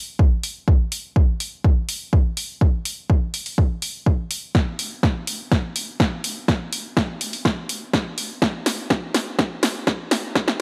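Techno in a driving, dramatic mood, this excerpt builds from the start under a filter sweep and light digital ambience, as an overdriven, up-front electronic kick drum enters at 0.2 seconds and a dry, punchy analog drum machine adds hi-hat and snare from 0.4 seconds before a drum fill arrives at 4.5 seconds.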